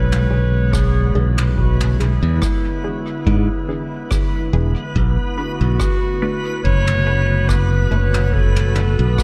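Ambient dub at 71 BPM in 4/4 with a gentle 16th-note swing, this hazy, deep fragment of a longer piece sits in B dorian, moving from E7 to Bm7 at 5.0 seconds. A dark, smooth-topped clarinet carries the solo melody in a classical style, its phrases trailing into dub echo, while an airy, breathy pad with chorus holds soft sustained chords underneath. The most prominent part is a bright, growly fingered electric bass, placed direct and up front in the low register. A jazz brush kit enters at 0.1 seconds with rim clicks and toms, sounding distant and roomy in a small space and also fed into dub echo, and a dry, deep analog-style electronic kick joins at 0.7 seconds. Very quiet filtered dub chord stabs pluck and decay through a phaser, and a reversed, granular texture swells dreamily in the background with its own built-in reverb. The whole sits in light reverb, with some lossy compression artefacts audible in the sound.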